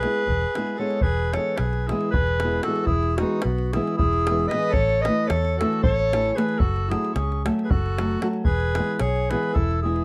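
Driving along in 7/8 at 226 BPM counted in eighths with a straight feel, this exuberant, wild Balkan wedding-band excerpt in E major moves from E through A and F#m back to E, with a section change at 1.0 seconds. A soft-attacked, classical-style clarinet carries the melody up front with plate reverb, while a reedy, hollow accordion plays a second line through slapback echo and a thumb-plucked flamenco guitar adds acoustic accompaniment. Underneath, a dark, foam-muted, round electric bass and a deep, close and dry davul anchor the groove, all captured with light reverb and close, detailed microphones.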